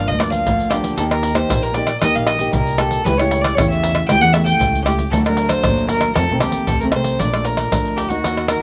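A straight four-beat samba and choro groove comes from close, dry tube shaker, pandeiro, tamborim and a deep surdo played with soft hands, entering at 0.1 s under a joyful, playful short cut from a longer piece. Up front, a single bowed fiddle with a reedy, gut-string tone carries the melody, while a classical nylon-string guitar is thumb-plucked underneath and a growly, woody pizzicato upright bass anchors the low end. The harmony moves from Gm7 through A7/C# and F7 before a new section opens on Bbmaj7 at 7.2 s, all in a dry open-air sound.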